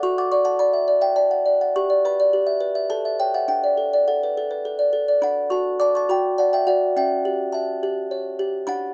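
A delicate, tinkling music box opens alone, its small plucked tones sitting up front and ranging from C#4 to D6 in a tender, dreamy lullaby. The classical piece moves in a gentle 3/4 at 104 BPM with a straight feel, set in D major and tuned slightly low to A4 = 436 Hz. Its harmony begins on D/F# and passes through G, Em/G and A before settling on D at 3.5 seconds, then turns toward A7/C# at 7.0 seconds. A second section begins at 5.2 seconds and carries the short passage, cut from a longer piece, to its close. Light reverb and a dark, warm production lend the little instrument an intimate, nighttime glow.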